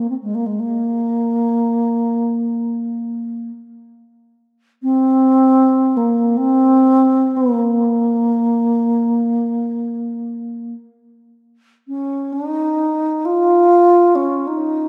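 A lone wooden-headed alto flute opens this meditative world piece and carries it alone from 0.0 to 14.9 s, moving in free, unmeasured time. Its straight, tongued tone is pure and mellow, staying in a low, narrow span between Ab3 and F4. The flute sits up front in the mix yet has a distant, haunting quality, with an analog delay trailing its notes. A wet echo-chamber reverb and a small-room ambience give the sound an echo-heavy, enveloping character. The passage is cut from a longer piece and holds to a single unbroken section of inward contemplation.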